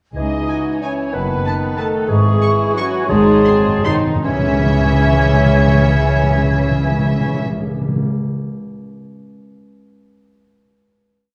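Sweeping and bittersweet, this brief classical ballroom waltz in C# minor moves in a rubato 3/4 at 142-204 BPM, its rich violin section singing the melody over a floating viola line, after-beat chords and a dark counter-melody from the chamber violins, while airy flutes, oboe, clarinet, bassoon and French horns sustain chords and double the tune in the background, cello and double bass hold the bass, the pace slows from 1.6 seconds, and close, dry timpani on medium mallets roll in with a fill from 3.1 seconds into the final chord at 4.2 seconds, all bathed in a wet scoring-stage reverb.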